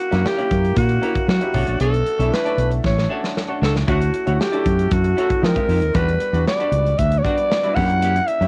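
A breathy, raspy alto saxophone carries the melody from the very start of this short cut from a longer piece of polished 1980s jazz-funk pop, its vibrato and smooth top giving the solo line an up-front, pop-style voice over a breezy, urban mood at 116 BPM in a straight 4/4. A clear, slightly worn baby grand piano plays the accompaniment through a lush chorus, while a clean, picked electric guitar sits in the background with a riff touched by subtle chorus. From 0.1 seconds a round, dark fingered electric bass sits up front, joined by a studio drum kit with a punchy kick, medium-tuned snare and hi-hat. The drums play a fill between 2.8 and 3.9 seconds. The harmony moves through rich extended chords, starting on F#7b9, passing through Bm9, Dmaj9, Fm9 and Em9, and returning to F#7b9. Cassette tape colours the saxophone, piano, guitar and drums, and light reverb adds to the home-recorded feel.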